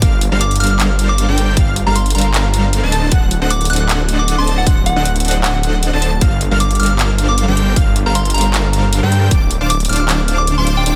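A huge supersaw riff with vintage 12-bit sampler grit pumps through this emotional, lush half-time future bass excerpt, riding over a thick, chorused detuned saw bass and a punchy, up-front electronic kick, while a layered pop kit adds handclaps and metallic hats, a soft FM bell enters at 0.4 seconds through chorus, phaser and digital delay, and an airy, dreamy lead arpeggiates in the background over Gm11 and D7b9 chords, all under light reverb and a dense, heavily limited master.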